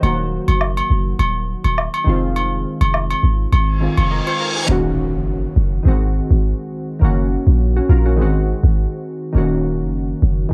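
Mellow, sultry afrobeats cut from a longer piece, with glassy, detuned digital keys carrying chorus and cassette-tape color over a deep, boomy 808-style bass, while agogo bells and woodblock play until 4.4 s and electronic sound effects enter at 3.8 s, a reverse cymbal leading into an impact at 4.7 s, with a downlifter among them, all captured dry on a home cassette recording.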